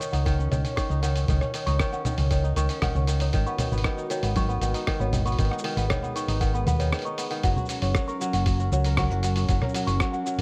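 Delicate and hopeful, this folktronica excerpt at 117 BPM in F# major sets crisp, ringing fingerpicked kora arpeggios over a warbling, nostalgic tape-like pad of detuned sustained chords, while a sweet, bell-like small celesta with digital delay traces a soft second line in the background. A round, dark hollow-body electric bass sits up front, joined by a muffled, thumpy electronic kick and a pitched-down, compressed lo-fi sampler-style kit of congas, hi-hat, rim click and shaker, all wrapped in vinyl crackle. The harmony moves from C#sus2 to G#m7, and after a short break at 6.9 seconds it settles on F# for the closing section.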